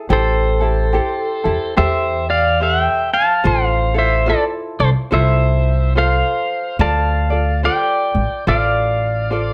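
A moderate studio room with a short reverb gives this dreamy, relaxed Hawaiian excerpt a gentle glow, carried on a lilting swing in four. Up front, a bright, twangy electric pedal steel guitar sings the melody with fingerpicks, slide and volume swells, its clean, compressed tone bathed in plate reverb, while a woody, dark pizzicato upright bass with steel strings anchors the bottom just as prominently. Lower in the mix, a light, fingerpicked acoustic ukulele, also touched with plate reverb, opens the excerpt and moves through Am7, Fmaj7/A and Dm7.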